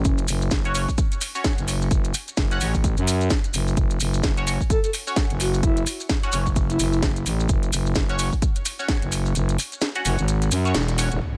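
The recording is dry and close, with very little reverb, and is cut from a longer bass house track that feels aggressive and swaggering over a swung groove. A growling, thick FM bass with overdrive sits up front and pumps against a punchy electronic kick. A house kit adds a cracking snare and metallic, low-passed hats, joined by grainy, mellow maracas. A band-passed chord stab, nasal and detuned, carries phaser, 12-bit sampler grit, tape echo and sidechain pumping through most of the passage. After a brief touch at the very start, a breathy, flute-like synth lead with chorus, vibrato and tape echo returns at 4.7 seconds for a short, warbling melody. The kick drops out at 9.4 seconds, the band hits an accent shortly after, and a forward impact lands at 11.2 seconds.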